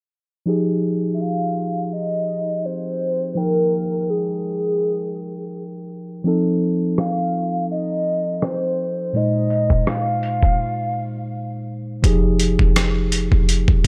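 A hollow, woody clarinet-like synth lead with chorus and tape echo carries a longing, sensual melody over mellow tine electric piano chords in this contemporary R&B excerpt, as a gritty, overdriven sampler-style kit of thumpy kick, hi-hat and rim click enters at 7.0 seconds and a deep, round 808-style bass joins at 12.0 seconds, set in a dim digital ambience.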